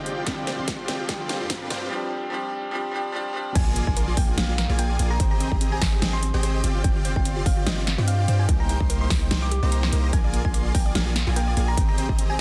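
Bittersweet and lush, this future bass passage at 146 BPM in C minor moves with a swung, half-time feel and is cut from a longer piece. It opens with a build-up in which a bright, worn concert grand piano plays up front with audible action noise, pumping and a digital delay, over a very quiet, shimmering pad that fades by 1.9 seconds while a drum fill rolls. A huge, thick supersaw riff with a low-pass filter, a deep, sine-like 808-style bass, and a warbling unison pluck with delay running arpeggios in the background all pump together beneath big-room dance drums with a huge snare and metallic hats, anchored by a punchy electronic kick. The drop arrives at 3.6 seconds with a very quiet impact as the piano stops and a round, tine-like thumb-piano-style synth pluck takes the melody, dressed in lush chorus and dub echo. Harmony cycles through suspended and seventh chords such as G7sus4, Bb7, Abmaj7 and Cm7, all set in light reverb under a dense, heavily limited modern master.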